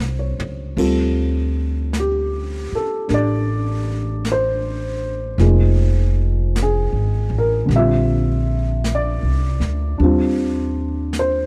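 A brushed drum fill opens this melancholic, wistful jazz ballad cut from a longer piece, at a slow 52 BPM swing in D minor, where a dark, boxy upright piano and a woody pizzicato upright bass sit up front over a soft brush kit with boomy kick and dark cymbals, moving from A7alt through Dm7, Fm7 and Bb69 to Ebmaj9 in a dry, close 1970s-style small-room sound.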